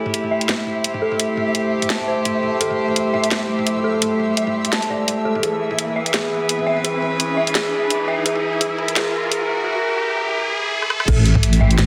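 Awash in echo-chamber reverb and a dense, heavily limited master, this spacious, heavy half-time drum and bass build-up sets a rich, reedy bowed cello section playing sustained chords that pump against the sidechain, while an eerie, inharmonic synth bell arpeggiates through chorus and dub echo over a flickering, grainy texture in the background. An overdriven drum kit with a cracking snare and bright hats drives the passage as an electronic riser climbs from 1.5 s, and a drum fill arrives at 10.8 s. At 11.1 s a deep, wobbling bass and a tight, overdriven electronic kick land as the harmony moves from Am7 through E back to Am7.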